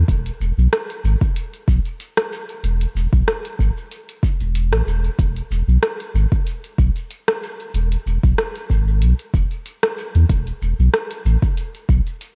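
A round, sine-toned sub bass with a sidechain pump opens this earthy organic downtempo cut in E major at 94 BPM, joined at 0.1 seconds by an overdriven, up-front electronic kick and a layered deep house kit of hi-hat, rim click and shaker, all swung lightly on the 16ths in a dry, dark mix that sounds cut from a longer piece.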